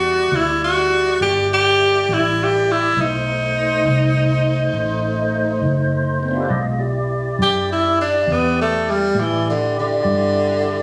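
Slow blues in 12/8 at 68 BPM, smoky and mournful, in E minor with tuning at A4 = 445 Hz, cut from a longer piece. A clear, close-miked tenor saxophone carries the jazz-style melody up front with vibrato, soft attacks and scooped notes, taking a solo from 6.5 s. Beneath it, a warm, clean tonewheel organ holds sustained chords over Em7 and B7b9 with key click and a slow rotary speaker, and a dark, foam-muted fingered electric bass sounds round and punchy, all heard through light reverb in a phone recording made in the room.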